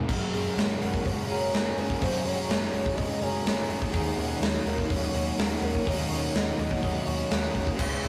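Blissful and dreamy, this 8-second excerpt of shoegaze-tinged dream pop rock in Gb major rolls along at 125 BPM in straight 4/4, moving from Gbadd9 to Ebm7 at 3.9 seconds as an up-front big-room drum kit and a round, foam-muted bass drive beneath background fuzz and lo-fi small-amp guitar riffs, a very quiet shimmering twelve-string acoustic arpeggio, a faint crunchy double-tracked overdriven guitar riff, a velvety chorused synth lead melody and a swirling phased pad, all set in a rough rehearsal-room sound with saturation and moderate reverb.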